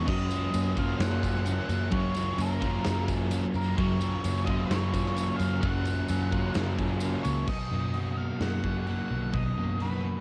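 A dark octave-fuzz lead guitar sings the melody through tape-worn distortion and analog delay in this hazy, dreamy shoegaze and dream pop rock excerpt at 130 BPM in F# major, backed by a thick chorused fuzz guitar, a crunchy overdriven guitar trailing reverse reverb, a bright, double-tracked overdriven guitar with tremolo that drops out at 7.5 s as the harmony shifts from F#maj7 to Bmaj7, a round, foam-muted vintage bass, a huge arena drum kit with bright cymbals and a punchy kick in a hall, and a jingly tambourine, all set in a small-room cassette home recording with a faint mains hum.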